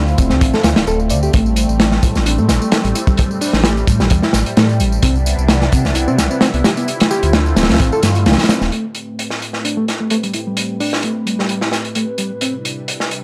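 A crunchy, saturated breakbeat drum kit with a tight kick and rolled-off top sits up front in this gritty, raw breakbeat excerpt, joined by a deep, rumbling detuned saw bass and a faint tape-warm tambourine that both drop out at 8.7 seconds, while a reedy, worn electric piano riff and a swirling phased analog pad carry minor seventh and major ninth chords and take on filter sweeps through the final stretch, all in a dry small room.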